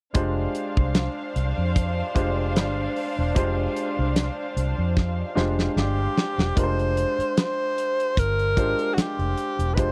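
An edgy, close-miked alto saxophone takes the melody at 5.8 s in this bittersweet, cinematic cut of lush 1970s-style soul at 75 BPM in F dorian, carried by a modern acoustic drum kit with a fat snare, a punchy kick and a fill from 5.0 s, a round, foam-muted fingered electric bass, clear grand piano accompaniment with long sustain over an opening Fm69, and a dark, woody violin section bowed sul tasto that sits distant until 6.5 s, in a dry, close studio sound.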